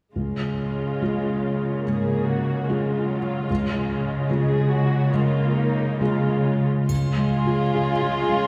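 Cinematic, emotional film score with a tender, hopeful mood and a rubato feel, set in a wet concert hall reverb and heard from further back in the room. From 0.2 seconds, a mellow felt-muted upright piano with audible action noise sits up front alongside a dark, woody viola section and a smooth cello section carrying the bass. At 6.9 seconds, a floating symphonic violin section takes the melody over an intimate chamber violin section's second line, both bowed sul tasto, while a triangle sounds faintly in the background.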